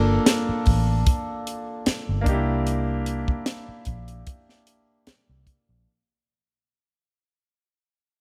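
Up front and dry, a tight funk drum kit with a high-tuned snare, tight kick and hi-hat carries this bittersweet, silky slice of lush 1970s-style soul, setting a gentle swung sixteenth-note feel from 0.3 seconds. Beneath it, a dark, foam-muted fingered electric bass lays down a round, amped low end, while a clear baby grand piano rings with natural, long sustain over a move from Gm7 to C9 at 2.3 seconds. Light reverb softens the short fragment, which fades out across its 5.9 seconds.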